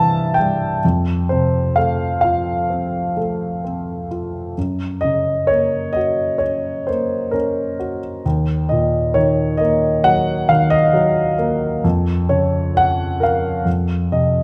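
Dark and melancholic, this lyrical classical piece for solo piano unfolds at 66 BPM in 4/4 with a flexible, rubato feel. A single dark grand piano carries the whole passage from 0.0 to 14.4 seconds, ranging from C2 up to A5. Its tone is mellow and intimate, placed up front with a natural character, and the noise of the instrument's action can be heard beneath the notes. The harmony moves from C to F, then shifts to Gb, Ebm and Bbm/F before arriving at a thirdless F7 chord near the close. A moderate reverb with a 1.6-second decay gives the piano the feel of a scoring stage. The passage is cut from a longer piece.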